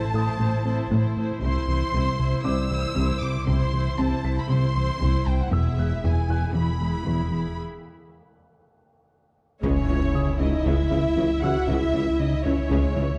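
Lush, bowed violins carry the melody from 0.0 s over expressive violas, a thick, saturated analog bass riff, focused cellos and double basses, a tine-like FM synth pluck playing arpeggios, and a faint grand piano echoing through digital delay, setting a brooding, relentless hybrid orchestral and electronic film cue at 117 BPM that moves from Am through C to E. After a break at 7.6 s, an electronic impact lands at 9.6 s as the harmony turns to C#m, bringing in a second violin line, mellow French horn chords, a deep sine sub bass with octave and a distant, roomy tuba. The dark production sits in a reverberant scoring-stage space, and the clip is cut from a longer piece.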